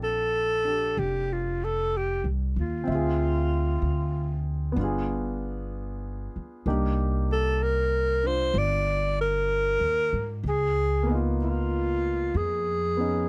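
A breathy alto saxophone opens this short jazz ballad excerpt together with concert grand piano and upright bass, all three sounding from the first moment to the end at 13.3 seconds. At 63 BPM in a swung 4/4, the mood is intimate and romantic, the saxophone carrying the melody in a mellow, whispered subtone with a soft attack and light vibrato, placed up front as if the player sits beside the listener. Beneath it, the piano accompanies with a smooth, vintage character and deep low end, its mechanical action noise faintly audible. The pizzicato bass, woody and growly with a thumpy steel-string tone, also sits forward in the mix. The harmony moves from Bbmaj9 through Dm7b5 and G7b9 to a lingering Cm9 before closing on Db13. Close, detailed microphones and a nearly dry room keep every breath and string texture vivid.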